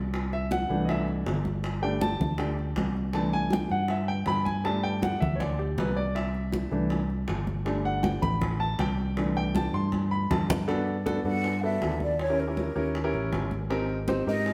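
A lively, sophisticated slice of Afro-Cuban jazz at 159 BPM in a straight 4/4, cut from a longer piece and played live by a band in a stone room with a wet reverb. A clear, natural baby grand piano takes the spotlight with a solo over an alternating C69 and Gsus2 vamp, its short sustain keeping the chords crisp and up front. Beneath it, a bright, growly fingered electric bass sits forward in the mix, while damped, high-tuned congas played with soft hands sound close and dry against round, low-tuned bongos that feel distant in the large room. A drum fill from 9.9 to 10.7 seconds leads into a new section where the harmony shifts through Gmaj9, Eb7b9 and Abmaj7. At 11.3 seconds a breathy, hollow concert flute enters with a mellow straight tone and soft attack, close-miked and up front as it carries the melody to the end.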